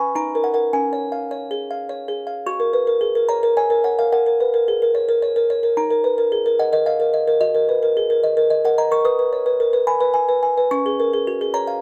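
A solo music box opens this short classical lullaby, its delicate, tinkling tones sitting up front in a boxy small room with light reverb. Cut from a longer piece, the excerpt moves at 109 BPM in 3/4 with a straight feel, set in F# major and carrying an innocent, tender mood. The plucked notes of the small box sound slightly out of tune, which adds to its homespun charm, and the close, detailed microphones capture every tiny strike across a range from C#4 up to D#6. A brief opening phrase gives way at 2.5 seconds to a longer second passage that arrives on F# and then drifts through D#m, G#m and C# harmonies before the music box stops at 11.8 seconds.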